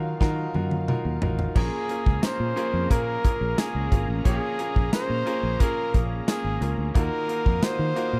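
1980s-style pop in Bb minor at 89 BPM, dramatic and urgent, this short cut from a longer piece opens on a clear concert grand piano, a lush detuned sawtooth pad with chorus and phaser in the background, a dark, round fingered electric bass and a punchy modern studio drum kit whose fill runs from 0.2 to 1.6 seconds, before an up-front flugelhorn with scooped notes takes the melody at 1.6 seconds over a very quiet, crunchy double-tracked overdriven guitar, moving from Ebmadd9 to Bbm7 and back to Ebmadd9 in a dry sound.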